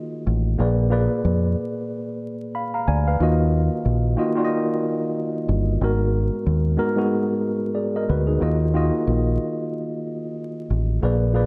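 A worn, slightly out-of-tune tine electric piano, lightly overdriven and heard as if through built-in speakers, sits up front with a round, dark fingered dub bass joining at 0.3 seconds, carrying a reflective, moody hip hop groove with a light swing over minor-key chords, all wrapped in light digital reverb and a bed of vinyl crackle in this short cut from a longer piece.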